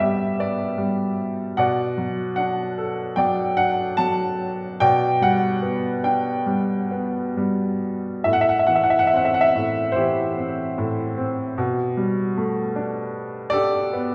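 Rubato phrasing in 4/4 lets the time breathe freely, giving this lyrical classical solo piano piece a peaceful, unhurried calm. A single upright piano carries everything, its tone clear and woody, and it sits up front, ranging from A2 to A5. The harmony moves gently through inverted G chords and minor sevenths before settling on a Gadd9/B colour near the close. An opening passage gives way to a contrasting second idea at 8.3 seconds, and the fragment is cut from a longer work, ending at 14.1 seconds. A lush recital hall reverb with a 1.7-second decay surrounds the instrument, lending the warm playing a spacious, resonant glow.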